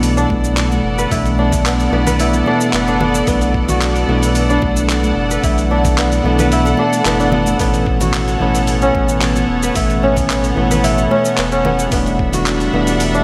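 A crisp, fingerpicked kora spins ringing arpeggios with analog delay through this hypnotic, earthy organic downtempo excerpt at 111 BPM in B minor. The harmony moves from Bm7 to A69 at 7.6 seconds and Em9 at 11.9 seconds, carried by a dark, clean electric guitar with analog delay and a veiled, con sordino string section, both pumping with sidechain over a deep, round sine sub bass. A gritty, tape-warm sampler-style kit of cabasa, handclaps and hi-hat plays alongside a thumpy electronic kick sitting in the background and very quiet, close, dry congas and bongos played with hard hands, all bathed in a lush hall reverb for a dreamy mix.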